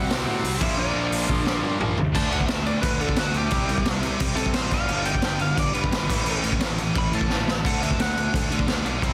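A raw garage drum kit sits up front in this rowdy, upbeat punk rock excerpt at 175 BPM, its punchy kick and medium-tuned snare gritty and saturated with a rolled-off top, playing half time before a fill leads into the lead guitar solo at 2.1 seconds. The twangy, slightly broken-up lead guitar carries the melody with tape echo until 8.3 seconds. Beneath it are three picked rhythm guitars playing riffs (a faint, bright overdriven one, a faint, compressed distorted one, and a tight, double-tracked one set in the background) plus a growly fuzz bass, all held close and dry in a dense, heavily limited master.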